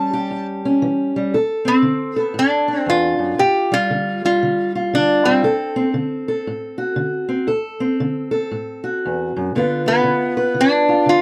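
A swung 4/4 groove at 117 BPM drives this gritty, rollicking acoustic country blues, where a bright, nasal metal-body resonator guitar, played with a steel bar and fingerpicks, carries the melody up front, drops out at 5.9 seconds and returns at 9.9 seconds over a dark, boxy fingerpicked parlour steel-string guitar accompaniment, all in a dry, close 1970s-style studio sound with light reverb.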